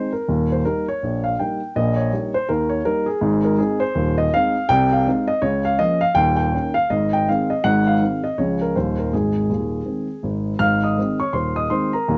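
A swung 162 BPM pulse in 4/4 drives this playful, exuberant stride piano excerpt in Ab major, cut from a longer piece. A lone baby grand carries it from 0.0 to 12.2 seconds, sitting up front with a dark, mellow tone and long sustain, ranging from Eb1 to F6 over changes that move from Eb7 through Ab, Bbm/Db and Db before settling back on Ab. A moderate studio ambience and a warm production round out the sound.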